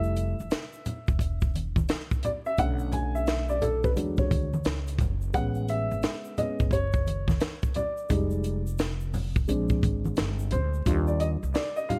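Vinyl crackle and studio reverb give this short jazz-hop clip from a longer hip hop piece a cool, smoky atmosphere. A dark upright piano carries the lead from start to finish, its mellow, boxy tone and short sustain sitting up front as it moves through Fmaj7, Bm7, E7 and Amaj7 before shifting to Fm7, Bb7 and Ebmaj7. A pizzicato upright bass with steel strings adds a woody, growly low end close to the listener and drops out at 11.5 seconds. A compact cocktail drum kit enters at 0.2 seconds, dry and up front, with a punchy kick, high-tuned snare and hi-hat riding a swung sixteenth-note feel. Egg shaker and congas, played with soft hands and recorded close, add a ringing acoustic shimmer beneath the kit.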